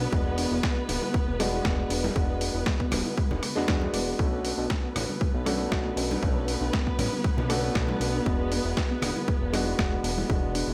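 A straight 4/4 groove at 118 BPM, driven by a punchy, overdriven electronic kick up front and a gritty sampler-style kit of hi-hat, rim click and snare, with distant, ringing congas joining at 0.9 seconds, carries this sensual, sleek nu-disco passage cut from a longer piece, where a fat, detuned analog bass sits beneath a dark, boxy grand piano with dub echo and lush bowed strings, both pumping under sidechain, while a soft, round pluck arpeggio glints very quietly over E7, Bm9 and E7 chords.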